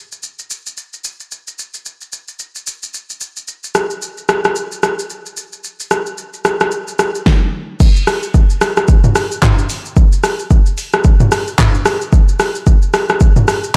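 The rhythm sits at 111 BPM in 4/4, with a 58% swing on the sixteenths shaping this amapiano groove. A single electronic deep house drum kit carries the whole piece from 0.1 to 13.7 seconds, layering kick drum, snare drum, rim click, handclaps, hi-hat, shaker, toms and crash cymbal. The kit is produced and up front, with a deep kick and a fat snare, and a tape-warm character from being re-recorded in a small room. Light reverb surrounds the sound, and the mood is soulful and deep. After an opening stretch, a drop arrives at 7.8 seconds and carries this cut from a longer piece through to its close.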